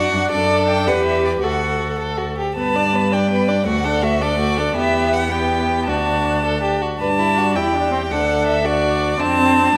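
Moving in a straight 6/8, this quick, cheerful and graceful classical-period string quartet excerpt sets an up-front melody violin, full-bodied and expressive with vibrato, soft attacks and portamento, above a clear, even second violin placed close by, while a smooth viola and a rich, distant cello supply the accompaniment and bass inside a wet scoring-stage reverb.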